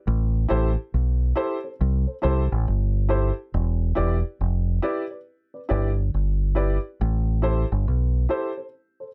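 This dry, close recording has the feel of a 1970s studio session, with little reverb around the instruments. It is a short cut from a longer roots reggae piece in A minor, moving at a hypnotic, laid-back 69 BPM in 4/4 with a loose swing on the sixteenths. A deep, fingered electric bass sits up front, round and punchy, its amped tone direct and dark in the low register. Alongside it, a dark upright piano plays stabs in its middle range; the instrument sounds worn and woody, slightly detuned, with audible action noise that makes it feel intimate and mellow. The harmony moves from Am7 to Em7 and returns to Am7 as a new section begins at 7.0 seconds, and the bass drops out at 8.3 seconds, leaving the piano to sound on briefly by itself.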